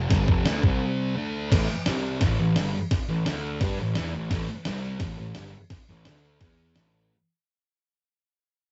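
Gritty and swaggering, this short garage rock cut from a longer piece charges ahead at 171 BPM in a straight 4/4, centered on A minor. A thick, double-tracked fuzz guitar plays the riff up front through power chords moving among F5, C5, D5, A5 and E5, while a growly, bright overdriven bass holds down the low end in fuzzy, picked tones. A dusty sampler-style drum kit drives it with a thumpy kick, a fat snare, hi-hat and crash, its compressed sound re-recorded in a small room. A jingly tambourine sits very quiet in the background, returning from 4.3 seconds. After a brief break ending at 1.5 seconds, the track fades out to its close, all captured as a rough rehearsal-room recording with saturated, dark tone and a moderate booth ambience.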